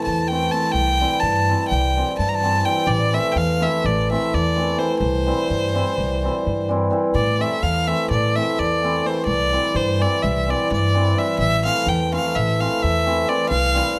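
In a driving 9/8 metre with a straight feel, this cut from a longer piece of Balkan wedding-band folk rushes forward with a virtuosic, wild energy. A single bowed violin carries the melody up front, its tone clear, nasal and intense with a slightly boxy edge, an airy bow and light vibrato. Beneath it, an up-front hammered cimbalom supplies the accompaniment with a shimmering, ringing sound. A pizzicato upright bass on steel strings enters at 0.1 seconds and gives a woody, warm foundation until 13.8 seconds. The harmony swings between A minor and C across two matching passes of the same section, the second beginning at 7.1 seconds. Close, detailed microphones and a touch of light reverb keep the small ensemble vivid and immediate.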